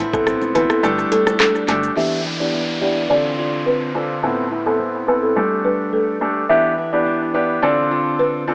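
A bouncy, hypnotic dancehall excerpt in a straight 4/4, cut from a longer piece and built on a looping cycle of chords from Amadd9 through Gsus2, Em7 and Dm7. A woody marimba with medium mallets carries the melody from the start, its dry, rustic tone sitting beside a clear, polished baby grand piano that plays accompaniment up front, while a fingerpicked plugged-in steel-string acoustic guitar spins arpeggios underneath. Guitar, marimba and piano all pass through a low-pass filter and tape echo. A deep sine sub bass with an octave, an electronic drum kit with a knocking kick, metallic hats, handclaps, rim click and shaker, and very quiet, round low-tuned bongos drive the opening, with the kick muted from 0.8 seconds and the rhythm section dropping out around 2.0 seconds. From there an electronic downlifter and a filter sweep take over beneath the melodic parts, all set in moderate spring reverb within an echo-heavy mix that has a small speaker sound.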